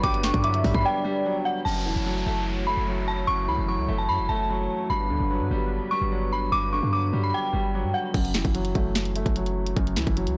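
A blown-out, overdriven recording with light reverb carries this menacing, melancholic half-time trap excerpt at 148 BPM in F# phrygian, where an eerie, inharmonic, detuned synth bell with chorus, phaser and delay carries the melody over a clear, low-pass-filtered grand piano, a warm analog pad in the background and a deep, boomy 808 bass, while a velvety sawtooth synth lead with tremolo plays only until 1.6 s, the trap kit's hard-clipped kick, sharp snare, bright hats and crash drop out at 1.8 s and return at 8.1 s, and an electronic downlifter runs from 1.7 to 4.9 s.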